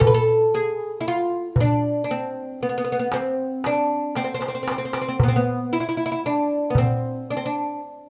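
A straight 10/8 pulse at 116 beats per minute, counted in eighths, drives this short clip from a longer Arabic maqam ensemble piece, and the mood is melancholic and full of longing. A small, high-pitched darbuka with a clay shell and natural skin provides the percussion and adds a drum fill between 4.2 and 5.2 seconds before dropping out at 7.0 seconds. Alongside it, a fretless, plectrum-plucked oud carries the melody between B3 and B4, its double strings giving a woody, warm voice that sits up front and is touched with plate reverb. The oud rings on slightly past the drum, to 7.8 seconds. The studio room is wet but short-decaying, and the ensemble is heard from further back, lending the intimate pairing a sense of space.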